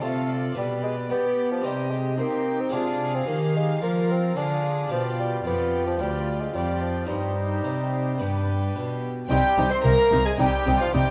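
A dark, reverberant recital-hall sound frames this stormy baroque-style concerto movement in C minor at 110 BPM, where a vintage solo bassoon carries the melody alongside a smooth-topped violin section and a second violin line, nasal violas and a brilliant harpsichord in the background weave the accompaniment, an up-front gut-string cello section anchors the bass, and a rich double bass section joins at 9.3 seconds as the harmony settles on C minor.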